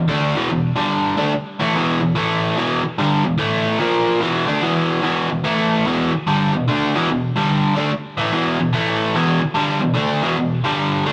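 A biting, overdriven electric guitar plays alone throughout this brooding, gritty rock fragment. It is picked, double-tracked and placed up front with a warm edge, moving through E5, G5, A5 and Em, with a brief A#5 at 3.8 seconds. At 146 BPM with a swung eighth-note feel in E minor, the part shifts into a new section at 5.0 seconds, and moderate studio reverb gives it a rough rehearsal-room sound.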